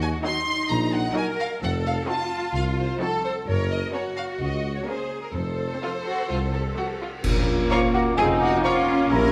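A straight 4/4 pulse at 129 BPM drives this playful, sneaky film cue in Bb minor, cut from a longer piece, where a dark violin section carries the melody up front over a symphonic second violin line, rich violas, a focused close cello section, a bowed double bass section and a mellow tuba. Bright cymbals, clash cymbals and concert bass drum join at 3.5 seconds, and a band accent at 7.2 seconds brings in a French horn section's sustained chords. From 7.7 seconds a slightly out-of-tune, bell-like celesta, a hollow flute, a vintage clarinet, a punchy cor anglais and a very quiet bassoon add whimsical color, all set in a wet scoring-stage reverb.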